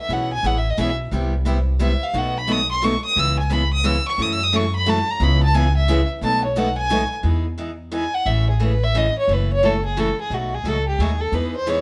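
A bowed violin with light vibrato and a smooth, intense top carries the melody up front throughout this lively, playful snippet of acoustic jazz manouche, swinging in 3/4 at 176 BPM in E major. Two bright, freshly strung picked steel-string guitars supply the accompaniment, the second one sitting in the background, dropping out at 7.0 s and returning at 11.3 s. Underneath, a woody, thumpy pizzicato upright bass with gut strings sits up front, and the whole band sounds as if playing live in one room with light reverb.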